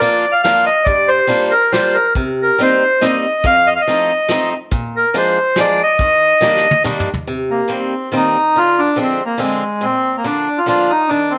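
Musette waltz in 3/4 at 141 BPM with a light swing, whirling and nostalgic, where a reedy, hollow accordion carries the melody up front with a slapback echo, a bright, boxy picked swing-style acoustic guitar accompanies, and a distant, roomy soft brush drum kit plays until 7.2 seconds after a fill beginning at 6.4, all set in a moderate plate reverb over chords moving from Bb through Gm7, Cm7, F7 and Ebmaj7 to Dm7b5 and back to Bb in this brief cut from a longer piece.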